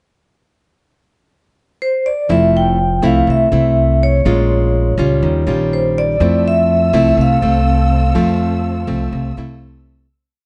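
Bossa nova with a breezy, romantic mood: a close-miked, ringing vibraphone with fast motor vibrato opens a complete short piece with a motif-based melody at 1.8 s, joined at 2.3 s by classical fingerpicked nylon-string guitar (thumb bass under syncopated plucked chords) and a woody pizzicato upright bass on dotted root-and-fifth figures, before a dark, lush bowed string section adds a soft-attack sustained pad from 6.2 s ahead of the fade-out, all in a warm production with light reverb.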